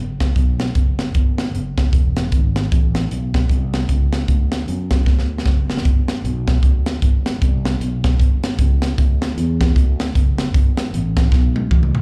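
A crisp, polished fusion drum kit sits up front in this soulful, hopeful uptempo gospel cut, its high-tuned snare, punchy kick, hi-hat and toms swinging at 153 BPM in 4/4, with fills arriving around 5.1 seconds and again near the close. Entering just ahead of the drums, a dark, round, direct fretless electric bass with a subtle chorus carries the low end from E1 to F#2. The short passage, tuned slightly below standard pitch, has the dry feel of a live club gig heard through the venue's PA, with the drums' airy room tone.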